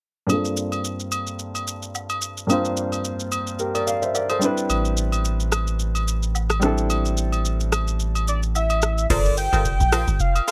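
Deep and hypnotic, this amapiano excerpt moves at 109 BPM in G dorian with a lightly swung 16th feel, as a polished baby grand piano under a low-pass filter sweep lays down Gm11 and Am11 chords over a booming, dry analog drum machine with a deep kick and metallic hats, plus close, dry agogo bells and woodblock. A round sine sub bass enters at 4.7 s, and a velvety, detuned sawtooth synth lead with chorus, tremolo and digital delay appears at 8.3 s. At 9.1 s the drop arrives with a round, percussive FM log drum bass and punchy, full-bodied chord stabs treated with chorus, phaser and delay, all in a dry, up-front mix.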